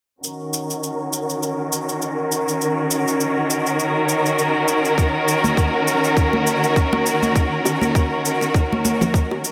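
Hypnotic and mystical, this organic downtempo excerpt moves at 101 BPM in Eb minor pentatonic with a 16th-note swing, resting on a single Ebm7 chord. An up-front, lush bowed string section holds sustained chords with vibrato, portamento and a smooth top, shaped by sidechain pumping and a filter sweep, while a tape-warm electronic shaker runs throughout. At 5.0 seconds a tight, up-front electronic kick drum arrives, joined at 5.4 seconds by bright, close and dry congas and bongos struck with hard hands, all set in a big arena-like hall reverb.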